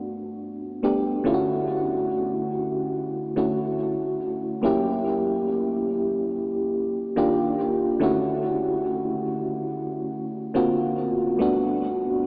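This R&B fragment, cut from a longer piece, drifts at 71 BPM in a straight 4/4 in D major, with a dreamy, romantic mood. A lone FM electric piano carries everything from 0.0 to 12.3 s, ranging from F#2 up to G4 with a dark, full-bodied tone, a fast attack that decays away, and a noise layer woven into its sound. The instrument sits up front, yet a diffuse ambient delay trails behind it, and the whole mix is soaked in a cathedral reverb that rings for 7.2 seconds, filtered through an AM radio sound. A brief opening on Gmaj9 gives way at 1.3 s to the main passage, which moves through Dmaj9, a tense F#7b9, a surprising Ebmaj9, back to Dmaj9, then D7alt before settling on Gmaj9 again. The lush extended harmony and hazy, reverb-soaked sound make the short clip feel like a half-remembered late-night ballad.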